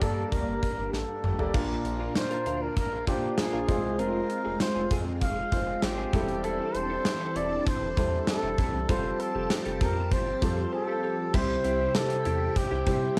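Romantic and nostalgic, this short cut from a longer 1980s-style pop piece moves at an easy, straight four-four pulse. A breathy flugelhorn carries the melody up front, its soft attack, light vibrato and whispered tone given a cassette tape coloring, while a warm concert grand piano accompanies with intimate, vintage character and audible action noise. Beneath them, a phased string machine holds swirling sustained chords in the background with ensemble chorus, and a smooth synth bass blends sawtooth and square wave into a saturated, mellow low end with a moving notch. The gated 80s drum kit sits up front with a tight kick, medium-tuned snare, crash, hi-hat and toms in a bright stone room, also colored by cassette tape, and a drum fill at 0.9 seconds leads into the clean, twangy electric guitar riff that enters at 1.5 seconds, recorded direct with analog chorus and tape echo. After a brief break at 10.7 seconds, the harmony settles onto C at 11.3 seconds, all heard through a wet booth ambience with the feel of a home cassette recording.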